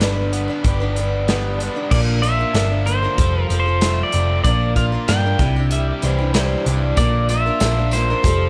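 A light small-room ambience frames this hopeful, open-road folk rock and heartland rock excerpt in a straight 4/4 at 95 BPM, where a boxy ladder-braced acoustic guitar, a biting, double-tracked overdriven guitar riff with spring reverb, a dark, round, up-front hollow-body bass and an airy, polished country drum kit with a punchy kick move through G, Bb, Fadd9 and Cadd9; a twangy, compressed pedal steel played with fingerpicks and analog delay carries the melody from 1.9 s, a lo-fi, slightly broken-up guitar through a small old amp adds a brief second line at 5.7 s, and a very quiet, reedy electric piano with fast tremolo and a jingly background tambourine enter together at 7.0 s.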